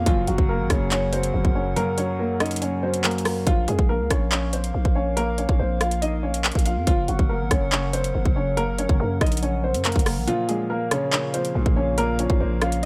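A woody, dark upright piano melody with echoing delay opens this cold, menacing drill excerpt in Bb minor at a half-time 141 BPM, over a boxy, deep concert grand, a growling, buzzy 808 bass, a warbling, detuned lo-fi pad sitting in the background, and an up-front drum kit of hard-clipped kick, metallic hi-hats, handclaps and rim clicks, with the grand dropping out at 3.5 seconds and returning at 10.3 seconds, and the kick briefly muted from 1.8 seconds.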